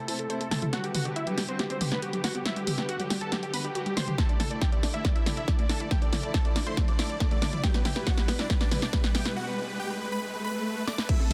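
Uplifting trance at 139 BPM in 4/4, this build-up is emotional and soaring, cut from a longer piece and moving through Am, Gmaj7, Dsus2 and Em. Huge, lush detuned supersaw chords carry the melody with sidechain pumping, digital delay and a low-pass filter sweep across the whole passage. An analog pluck plays arpeggios with chorus, tape echo and pumping. A second, very quiet evolving pluck adds another line, while a dark chamber string section holds bowed, vibrato-rich sustained chords in the background. A punchy, dry analog drum machine sits up front with fills on snare, toms and cymbals, and a layered electronic kick enters at 4.2 s. A faint electronic riser builds from 1.5 s, and after a break at 9.4 s a swell leads into what follows. The mix has light reverb and a dense, heavily limited modern master.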